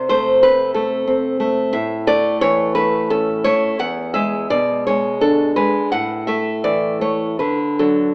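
Romantic classical guitar music, heard here in a short 8.1-second excerpt from a longer piece, with a tender, warm mood. A single nylon-string guitar plays alone throughout, fingerpicked and up front, with a bright acoustic tone that ranges from E2 up to F#5. The piece is in A major and 3/4 time, moving with a flexible rubato between roughly 72 and 92 BPM. The harmony passes from Am/C to A, then E7 at 3.8 seconds, settling on A5 before touching D near the close. The sound sits in a moderate recital-hall reverb, while an AM-radio coloring shapes the recording.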